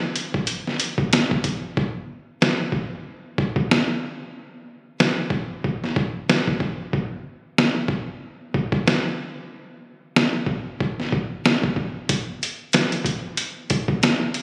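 Captured on a phone in the room, the recording carries a moderate echo-chamber reverb that hangs around each hit and gives the whole thing a gritty character. This is a tough hip hop drum groove cut from a longer piece, built solely from a trip hop sampler-style kit that sits up front in the mix. The kit sounds compressed and pitched down, with a muffled edge, a thumpy kick and a medium-tuned snare, all riding a loose swing on the 16ths. Hi-hat, kick and snare all play from 0.2 seconds. The hi-hats drop out at 1.8 seconds, leaving kick and snare to carry the beat, and return at 12.1 seconds until the drums stop at 14.4 seconds.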